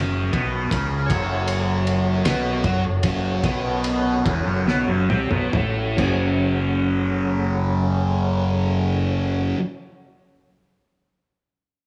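A bright, double-tracked fuzz guitar sits up front in this dark, hypnotic psychedelic rock excerpt, picking a riff in F# minor across a slow 6/8 pulse of roughly 44-52 BPM in dotted quarters, with a phaser coloring its distortion. Beneath it, a growling fingered electric bass adds round, punchy overdrive. A barely audible tanpura shimmers and buzzes as a drone for the opening 2.8 seconds. A cloth-damped drum kit enters at 0.3 s, muffled and lo-fi with a fat snare, tight kick, toms and dark ride and china cymbals, and plays a fill from 4.7 to 6.0 s before dropping out. A mellow, percussive tonewheel organ holds sustained chords from 1.1 s, its key click and chorus vibrato turning through a slow rotary speaker, while the tempo slows until the piece shifts into a new section at 6.0 s, all set in a small, lightly reverberant studio room.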